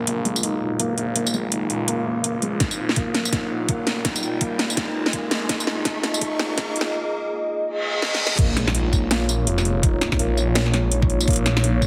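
A dark analog pad with chorus and sidechain pumping holds sustained chords beneath felt-muted upright piano arpeggios, soft and intimate with audible action noise, 12-bit grit and dub echo, as a swirling, phased detuned saw bass and a cracking, up-front drum and bass kit with metallic hats and tambourine drive this tense, cinematic half-time drum and bass cut in Bb phrygian at 166 BPM, the knocking electronic kick joining at 2.6 seconds for a build-up with drum fills, a background riser and reverse cymbal that lands on a drop and impact at 8.4 seconds, all set in a moderate room and squeezed into a heavily compressed radio sound.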